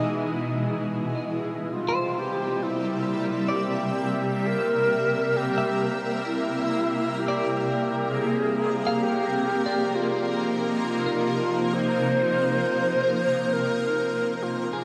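Ambient piece at 66 BPM with a warm, serene mood, cut from a longer work. A reedy, airy alto flute with vibrato and tape echo carries the melody over a shimmering, ethereal pad of detuned, slow-attack sustained chords with chorus and phaser, moving from Emaj7 through C7 to F7sus4, while a clean, compressed electric guitar picks arpeggios with lush chorus in the background. Everything sits in a huge, dark reverberant space before fading out from 12.9 to 14.8 seconds.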